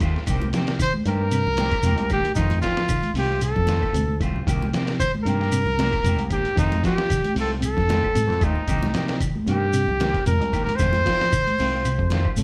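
A lightly swung 114 BPM groove in 4/4 drives this funky, intense afrobeat excerpt in C dorian, where a gritty, pitched-down sampler-style kit with a thumpy kick and a round, punchy fingered bass anchor a Cm7–F7 vamp, a dark, clean semi-hollow guitar plays arpeggios in the background and a slightly broken-up picked electric guitar adds stabs, while grainy shekere, very quiet woody claves and high-tuned, thick-skinned congas (from 0.3 s) fill out the percussion, and a clear trumpet with vibrato carries the up-front solo melody from 0.8 s, the band playing live together in a moderately reverberant stone room.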